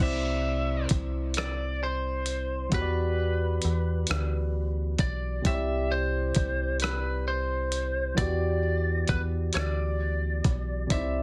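Slow six-eight R&B with a yearning, sultry mood, cut from a longer piece, where a bright, twangy, slightly broken-up lead guitar carries the melody over a barky tine electric piano, lightly overdriven through a combo amp with subtle chorus, that alternates between Cadd9 and Em7. Underneath sits a metallic, digital FM bass with a fast attack and decaying tone, and from 0.9 s a dusty, gritty sampler-style drum kit adds hi-hat, rim click and a thumpy kick re-recorded in a large room. Light reverb and a heavily compressed, radio-like sound frame the whole.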